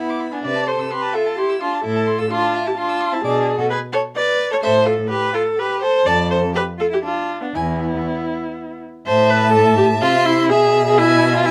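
In a rubato 3/4 at 117-131 BPM, this quick, restless and dramatic classical-period string quartet excerpt in A minor sets a focused, smooth-topped first violin with vibrato on the melody, a distant, expressive second violin with portamento on a higher line, an up-front, rich viola with vibrato and portamento carrying the accompaniment, and a warm, distant cello bass entering at 0.4 s, each part bowed by a single player in light reverb.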